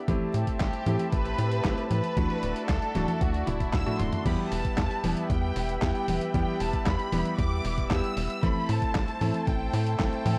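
A lush, distant violin section carries the bittersweet melody through this danceable italo disco excerpt, its bowed lines softened by vibrato and an analog delay, floating over a smooth, detuned analog pad with chorus and clangy electric grand piano stabs. A tight, punchy sawtooth sequencer bass drives alongside a thumpy electronic kick and a gritty, overdriven sampler-style kit of snare, hi-hat, handclaps, congas, toms and crash cymbal, which rolls into a drum fill from 3.5 to 4.3 seconds with a band accent at 3.7. The chords move from Am7 and Dadd9 to Em and Am, all captured in a dry, gritty hardware recording laced with vinyl crackle.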